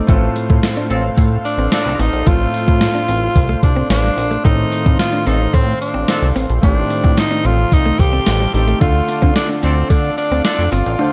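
A clear grand piano, a shimmering chorused pulse-width pad and a clean, direct-recorded electric guitar riff with analog chorus open this moody, urgent 1980s-style pop excerpt, quickly joined by a glossy, nasal synth bass and an overdriven, sampler-style drum machine with a thumpy kick and gated reverb snare. The tempo sits at 110 BPM in a straight 4/4, with the drums and bass pushed up front while the piano, pad and guitar stay in the background. A very quiet, jingly tambourine adds a close acoustic sparkle beneath the groove. A vintage horn section with light vibrato punctuates the texture with brief stabs, the first arriving at 0.9 seconds. From 1.5 seconds a raspy, forceful tenor saxophone carries the melody up front, gritty and punchy yet smooth on top. The harmony moves from F/A to Adim and then Dm, all set in a dark production with light reverb and a fragment feel, as it is cut from a longer piece.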